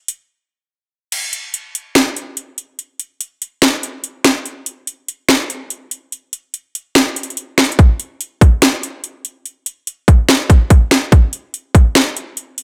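A light reverb surrounds this short cut of hard-hitting, eerie hip hop at 144 BPM in 4/4 with a half-time feel. An electronic trap drum kit sits up front, overdriven and re-recorded in a small room, with crash cymbal, finger snaps, metallic hats, a sharp snare and a hard-clipped kick. After a brief break from 0.3 to 1.1 seconds, the kick stays muted until 7.8 seconds, then returns for the rest of the passage.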